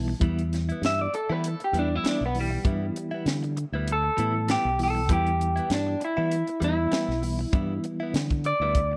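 Brooding and smoky, this straight-eighth soul blues excerpt in E minor moves at 98 BPM in 4/4 with a light sixteenth-note swing, sitting on an E minor chord throughout. A reedy electric piano with fast tremolo opens with a fill over a round fingered bass and a dry, tight funk kit with a high-tuned snare, while a compressed, clean direct-recorded guitar adds phaser-tinged stabs. From 0.9 seconds an up-front, slightly broken-up lo-fi guitar through a small old amp carries the melody, all in a light studio reverb.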